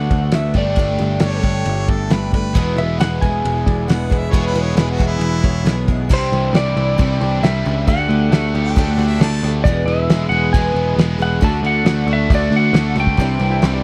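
Hopeful and open-road in feel, this folk rock and heartland rock passage at 135 BPM in 4/4 sets a clean lap steel guitar melody with volume swells over a shimmering, octave-doubled twelve-string acoustic, a crunchy double-tracked overdriven guitar riff, a growly, up-front picked electric bass and a cloth-damped drum kit with a fat snare and dark cymbals. A clear harmonica with light vibrato adds a second line from 1.2 seconds, a very quiet concert grand piano with audible action noise appears at 2.5 seconds, and a distant, reedy chamber string section sustains chords from 2.6 seconds onward. The close, dry 1970s-style studio sound carries light reverb as the chords move from D6 and Gsus2 to E, then through Cadd9 and D, in this cut from a longer piece.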